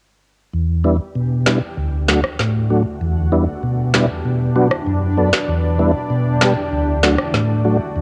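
A lightly reverberant home cassette recording captures a hypnotic, bouncy dancehall fragment, where an up-front tonewheel organ with chorus vibrato, key click and a slow rotary speaker plays smooth, clean accompaniment from 0.5 s, a cloudy, evolving granular pad holds blurred sustained chords beneath it from 1.0 s, and a tape-tinged electronic kit of woody snare, finger snaps and rim click sits up front from 1.5 s over chords cycling through Em7, D and Bm.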